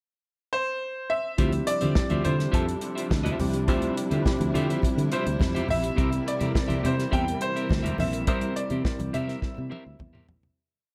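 Disco at 104 BPM in D minor, danceable and sultry, opening with a clear, worn grand piano alone at 0.5 seconds, its up-front motif of call phrases carrying a tape echo, before the band arrives at 1.4 seconds over a Dm11 that moves to C7. A dry, dark soul drum kit with a tight kick drives a four-on-the-floor beat with sixteenth-note hats, joined by a round, foam-muted fingered bass playing a syncopated line with ghost notes, choppy sixteenth-note clean electric guitar, and bright, low-tuned congas in the background. A slightly out-of-tune tine electric piano adds syncopated chords through its built-in speakers, while a lush, woody string section holds sul tasto pads under light reverb, and the piece fades out from 8.3 seconds as a drum fill closes it.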